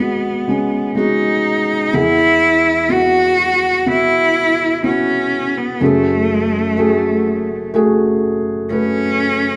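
A slow, straight 4/4 pulse at 62 BPM carries this heartfelt, tender pop excerpt in E major, moving from G#m7 to E and then to F#madd9 at 5.8 seconds. A single bowed cello sings the melody up front with a clear, focused tone and expressive vibrato, while a felt-muted upright piano accompanies close by, its soft, dark, intimate sound revealing the natural noise of its action. The two players share one room, and a moderate stone-room reverb gives the performance a live, resonant setting.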